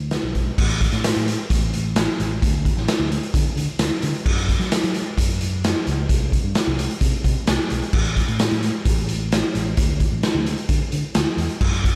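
A straight 4/4 beat at 130 BPM drives this angsty, brooding quiet-loud alternative rock excerpt, with a raw garage drum kit set up front in a bright stone room, its gritty, saturated sound carrying a punchy kick, medium-tuned snare, hi-hat and crash cymbal, while a growly, amped picked electric bass ranging from A1 to F#3 runs beneath it from the opening until 11.9 seconds, all in light reverb.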